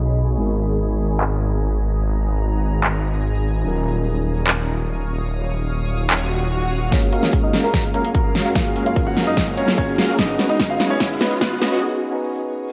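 A half-time groove in 4/4 drives this euphoric, playful future bass clip, cut from a longer piece, with a big-room dance kit of huge snare, crisp hats and handclaps entering at 1.2 seconds, tape-warm and up front. Underneath, a mellow tine electric piano and a shimmering, ethereal ambient pad with chorus, phaser and octave-up shimmer hold the chords, both pumping against the sidechain, while a thick detuned saw bass anchors the opening as a filter sweep moves through the pad. A very quiet swell, riser and reverse cymbal lead into the second half at 6.9 seconds, where a punchy electronic kick joins, the bass drops out, and a present, polished grand piano takes the melody with digital delay. A supersaw stab plays a filter-plucked riff in the background, and filter sweeps on both the stab and the piano carry a build-up over a drum fill before a short break at 11.8 seconds. Light reverb gives the mix a touch of air.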